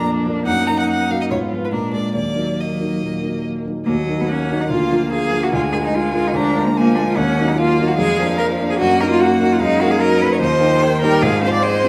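Moving in a rubato 4/4 at 146 BPM, this lively, graceful classical-period piano quartet movement in Eb minor sets a smooth violin melody, played with vibrato, over an up-front, focused cello second line. A clear bowed viola and an intimate grand piano, with audible action noise and long sustain, supply the accompaniment, and the whole passage is bathed in a wet recital-hall reverb as it is cut from a longer piece.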